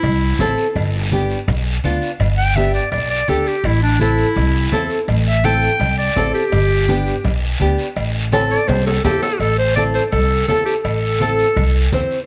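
Danceable and driving, this cumbia excerpt in A minor moves at 167 BPM as a bright, smooth-topped clarinet plays a classical-style solo up front until 9.4 seconds, over a woody, growly pizzicato upright bass, a fingerpicked nylon-string guitar with audible finger squeak, thin-skinned congas and ringing metal cowbell and timbales in the background, and a raspy, saturated guiro, with a drum fill from 8.3 seconds and moderate spring reverb in a small room ambience.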